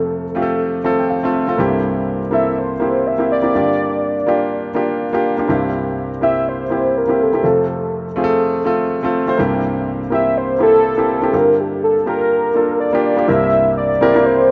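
A velvety, chorused synth lead carries the melody from the first moment over a concert grand piano with an intimate, up-front tone, deep bass and audible action noise, and the piano adds a brief fill between 0.6 and 1.6 seconds. This uplifting pop excerpt moves at 123 BPM in 4/4 with a sixteenth-note swing, cycling through F, C7 and Gm7 in C mixolydian before a new section begins on C7 at 13.3 seconds. A lush hall reverb gives the rough home-demo mix a warm glow.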